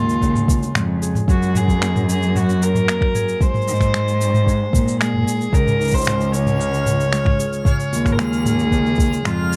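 Folktronica in Db major at 113 BPM in a straight 4/4, this short excerpt carries a pastoral, warm mood over chords moving from Db through Gbadd9 and Ab back to Db. A single bowed violin with a dark, nasal, reedy gut-string tone in period style carries the melody from a distance, roughened by vintage 12-bit sampler grit and tape echo. Beneath it, an acoustic Celtic harp rings with fingerpicked arpeggios in the background, while one bowed cello sits up front as the bass, expressive with vibrato, portamento and a smooth top. An organic electronic drum kit of finger snaps, shaker and toms enters at 0.1 seconds, joined by a soft produced electronic kick at 0.2 seconds. From 5.8 seconds, a reversed, granular swelling texture on a high F6 drifts in behind everything else, dreamy, detuned and bright with a soft attack, long release and its own reverb, all set in a light reverb.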